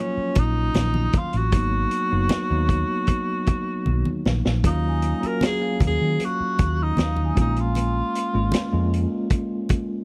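A dry, close 1970s-style studio sound frames this short cut from a lush, cinematic soul piece in Eb minor, moving at a smooth 77 BPM in 4/4. A solo tenor saxophone carries the melody with vibrato, subtone and scooped notes in a roomy jazz voice, over a bright, bell-like tine electric piano, a dark, round hollow-body bass played with the fingers, a punchy vintage drum kit with a high-tuned snare and a rolled-off top, and very quiet low-tuned congas. A drum fill at 3.9 seconds leads into the Ebm7 chord, and a delicate, ringing celesta sits in the background from 4.7 to 8.2 seconds.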